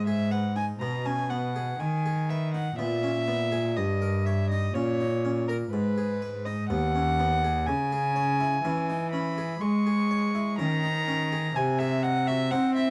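A single bowed violin carries the melody in this grave, solemn baroque-style sonata movement with continuo, its period gut-string tone sounding reedy and close up front. Beneath it, a lone bowed cello plays the bass line with a rich, similarly close presence, sitting slightly higher in level than the violin. A plucked Flemish-style harpsichord with one set of strings fills in the accompaniment, its round sound sitting a little lower in level. The music moves at a slow 62 BPM in a straight 4/4, in G# minor, passing from G#m through D#7/G, back to G#m, on to C#m and finally G#7/B# at 11.6 seconds. Light reverb and a dark, warm production frame this short cut of about 12.9 seconds, taken from a longer piece.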